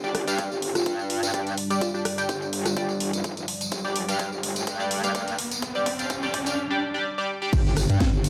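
Swung sixteenths at 126 BPM drive this gritty, swaggering bass house build-up, where a metallic, saturated wobble bass sits up front beside nasal, band-passed chord stabs with phaser and delay, while a moody ambient pad under a filter sweep, a jingly vintage tambourine, a garage drum kit with cracking snare and bright hats, a punchy, tape-warm electronic kick in the background, a bell-like FM electric piano sparkling only from 0.8 to 2.9 seconds, and a riser from 2.2 seconds all build toward an impact at 7.5 seconds, when a dry, barely audible soul drum kit slips in under light digital ambience.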